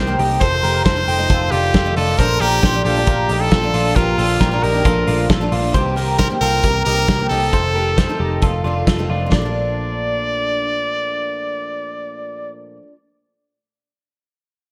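A lightly reverberant studio sound frames this breezy, nostalgic cut of jangly indie pop at 134 BPM in Bb major, where a brilliant, forceful trumpet with vibrato and slapback echo carries the melody up front over a shimmering, octave-doubled picked twelve-string acoustic guitar with audible finger squeak, a clean, compressed twelve-string electric guitar playing arpeggios through spring reverb and slapback echo until 10.6 seconds, a dark, round, foam-muted vintage electric bass, and a loose indie drum kit with punchy kick, medium-tuned snare and rolled-off top in a pumping room that stops at 9.4 seconds, as the chords move through F7, Bbmaj7, Cm7 and back to Bbmaj7.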